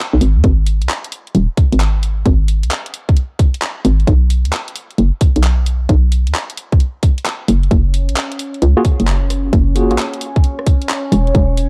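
Soulful and bouncy, this two-step UK garage excerpt at 132 BPM in F# major swings on a hollow, knocking FM bass and a tight, up-front electronic kick beneath an overdriven garage kit of handclaps, hi-hat and rim clicks, before a smooth, warbling analog pad with lush chorus and sidechain pumping enters at 7.7 seconds and a worn, slightly out-of-tune tine electric piano adds tremolo-and-delay stabs from 8.8 seconds, all in a dark, dry production.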